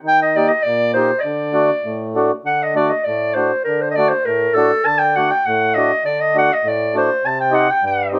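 In a straight two-beat metre, this short klezmer fragment, cut from a longer piece, carries a soulful, bittersweet mood. A dark, reedy accordion, its tone chamber voicing heard with a dry tuning, provides the accompaniment from the start, moving through Eb, D and, near 7.2 seconds, C minor. A mellow clarinet in classical style takes the solo melody at 0.1 seconds, sitting above the accordion in the balance and given a roomy, distant quality by plate reverb. Both instruments sound up front through close, detailed microphones, with only light reverb in the space. The same opening section is stated twice, the second pass beginning at 2.5 seconds, before the accordion closes at 8.2 seconds.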